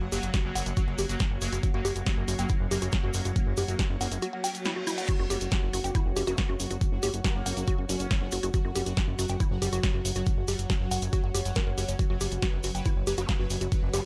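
An overdriven electronic kick drum sits up front and knocks hard through this hypnotic, driving psychedelic trance excerpt at 139 BPM in F# major, backed by a techno kit with a punchy snare, tape-toned hats and crash, all re-recorded in a small room. Beneath it, a fat, thick analog bass holds F#1 with sawtooth and square-wave weight, a filter sweep and a moving notch. The riff comes from a woody, wave-folded pluck, dark and percussive with a sub octave, chorus and tape echo, while a grainy, vintage tube shaker ticks quietly in the background. Sustained chords from a detuned, pulsing gated texture and a cloudy, evolving granular pad breathe with sidechain pumping under a digital ambience. A reverse cymbal rises at 4.4 seconds, and a nasal, saturated vowel-sweep wobble bass slips in faintly at 6.3 seconds and again at 13.2 seconds, filtered and trailed by dub echo.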